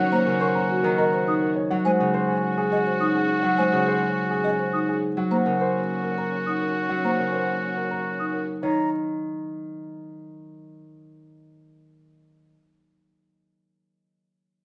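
Meditative and hypnotic, this excerpt of minimalist classical pattern music moves at 104 BPM in a straight 3/4 in Eb dorian, where a dark, worn grand piano with audible action noise carries the melody over a ringing, fingerpicked Celtic harp up front, round soft-mallet marimba arpeggios, airy, hollow flute arpeggios with vibrato in the background, a distant, roomy oboe second line and smooth, rich bowed strings holding chords, all in a moderate large studio reverb captured by close, detailed microphones, until the harp carries on alone from 8.9 s to 12.5 s.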